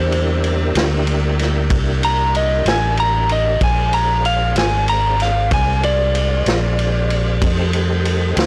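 A blown-out, overdriven recording with small-room ambience gives this slow blues fragment a swaggering, soulful grit, rolling in 12/8 at 63 BPM. A slightly broken-up, compressed electric lead guitar solos until 7.7 seconds, while a smooth tonewheel organ holds sustained chords through a slow rotary speaker with chorus vibrato. Up front sit a round, amped fingered bass and an acoustic vintage kit with punchy kick, medium-tuned snare and dark ride cymbal, moving through C9, Bb9 at 3.6 seconds, and F9.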